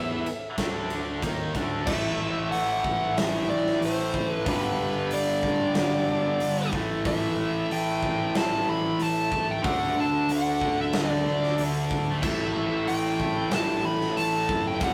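A straight 4/4 pulse drives this menacing, aggressive hard rock excerpt, with a big acoustic drum kit entering at 0.3 s, its punchy kick, medium-tuned snare, hi-hat, ride and crash ringing in a stone room. Up front, a tight, bright, double-tracked distorted guitar picks the riff over a round, overdriven fuzz bass, while a dark high-gain lead guitar carries the melody above, as the harmony moves through Am and G after 1.9 s before settling on A and D power chords. The whole has a rough rehearsal-room feel, with warm saturation and moderate reverb.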